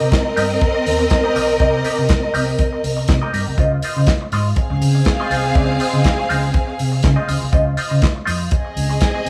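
Driving and danceable, this disco excerpt moves at 121 BPM in a straight 4/4, with the harmony shifting from Cm7 to Dbmaj9 at 3.6 seconds. A lush symphonic string section sits up front as the second line, bowed with vibrato and a soft attack, ranging from C4 to F5 with expressive, close ensemble sound. Beneath it, a hollow-body short-scale electric bass, fingered and amped, supplies a dark, round low end between Cb2 and Db3. A bright, clean semi-hollow electric guitar plays picked, compressed accompaniment through a wah effect, sitting a little lower in level than the other parts. The soul drum kit enters at 0.1 seconds with handclaps, hi-hat, a tight kick and a medium-tuned snare, its dry, muffled, lo-fi tone rolled off at the top yet placed up front. The band plays live in one room, bathed in a wet large studio reverb with an RT60 of 1.2 seconds.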